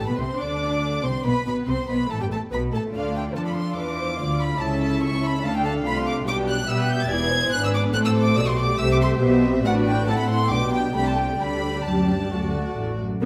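Cheerful and graceful, this quick classical-period movement for string orchestra moves at 142 BPM in 4/4 with a rubato feel, tuned slightly low to A4 = 437 Hz. The first violins carry the melody, climbing as high as A6 with a pure, floating tone, while a close-miked second violin section adds its own line beneath in a similarly soft-attacked, warm voice. Violas supply lush, woody accompaniment with vibrato and sit a little forward in the mix. Cellos and double basses share the bass: the cellos gentle and airy, the basses dark and intimate down to E1. Every section plays sul tasto throughout the 13.3-second passage, which is bathed in a wet recital-hall reverb as the harmony moves from Dm through E7 and Am to a Dsus4 resolving onto D.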